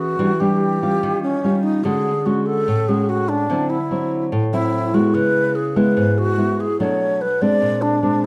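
Bossa nova at 145 BPM in 4/4, this romantic, sunny excerpt pairs an up-front alto flute melody, breathy and bright with vibrato, a crisp attack and an unsteady delivery, with an up-front classical nylon-string guitar whose thumb-plucked accompaniment moves through jazzy chords from Em9 and Dmaj7#11 to Bb9, all set in a moderate large-studio reverb with a dark, warm production.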